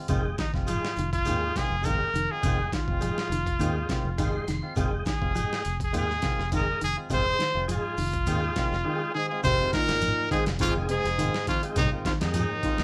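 Recorded as a band playing live in one room with moderate studio reverb, this intense, driving afrobeat excerpt in F minor at 103 BPM rides on a gritty, pitched-down sampler-style drum kit with a thumpy kick, a round, foam-muted fingered electric bass, a distant, grainy shekere, twangy clean electric guitar stabs, dark electric guitar arpeggios in the background, and a smooth tonewheel organ through a slow rotary speaker that adds a brief fill at 3.9 seconds. Meanwhile, a bright, punchy trumpet carries the melody up front with scooped notes and vibrato, and at 9.2 seconds a trombone with a smooth top and a raspy baritone saxophone join it on second lines.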